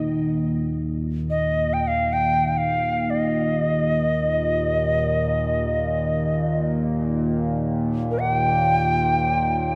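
Peaceful and calm, this short cut from a longer piece of meditative world music unfolds in free time in Eb major pentatonic. A sawtooth analog drone sits up front from the start, holding low between Eb2 and Bb2 with a slow attack and long release, its evolving pulse-width tone colored by chorus and phaser. A glassy, ethereal glass harmonica shimmers faintly in the background, heard briefly at the opening and again from 8.1 seconds, its pure tones beating gently. At 1.3 seconds a reedy cedar flute in the Native American style enters as the melody, close-miked and up front, with a crisp, chiffy attack, woody breath and vibrato, its line trailed by delay. A wet church reverb with a long tail surrounds the whole, giving the scene an airy, spacious stillness.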